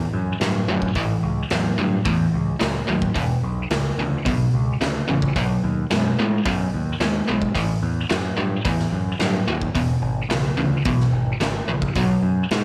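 A straight 4/4 groove at 109 BPM drives this raunchy, swaggering cut of blues rock power trio and southern rock in E major, lifted from a longer piece. A distorted, double-tracked electric guitar sits up front with a bright, picked riff in its low register, running from 0.0 to 12.6 seconds. Beneath it, a growling picked electric bass adds a direct-and-amped grit, overdriven with tube saturation. A big rock drum kit joins at 0.4 seconds, its acoustic, natural sound filling a big room with hi-hat, a punchy kick and a medium-tuned snare. The chords move from A7 through E5, B, A5 and E to B5, all of it held in a light reverb.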